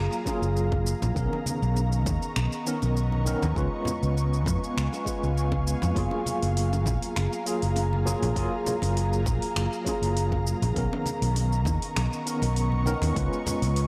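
A straight 4/4 groove of overdriven electronic kick, finger snaps, metallic hi-hat and shaker, with hard-hit bongos and congas sitting in the background, drives this blissful sunset chillout excerpt cut from a longer piece. Up front, a dark, round fingered electric bass with tube saturation anchors the harmony, while a worn, slightly out-of-tune tine electric piano with medium tremolo and delay comps through a combo amp and an ethereal, detuned pad with a slow attack and ensemble chorus hovers above. The recording is blown-out and overdriven, set in a lush digital hall reverb.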